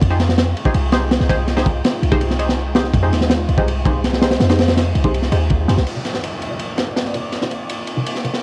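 A crunchy breakbeat drum kit sits up front in this frenetic, atmospheric drum and bass and jungle excerpt at 164 BPM in C minor, its tight kick, medium-tuned snare and dark ride cymbal sounding gritty and saturated with a rolled-off top and cassette grit. Beneath it, a deep, boomy 808-style bass with tube saturation carries the drop over an Fm9 chord until 5.9 seconds. A silky, vintage string machine holds sustained chords in the background throughout, thickened by phaser and ensemble chorus, while a muted, detuned dub chord stab plays with phaser and dub echo. From 5.9 seconds the harmony moves to Cm11 as a filter sweep moves across the stab and an electronic downlifter falls in. At 7.1 seconds a very quiet, reversed granular texture swells in high and dreamy, giving the lo-fi cassette home recording a hazy, lightly reverberant finish.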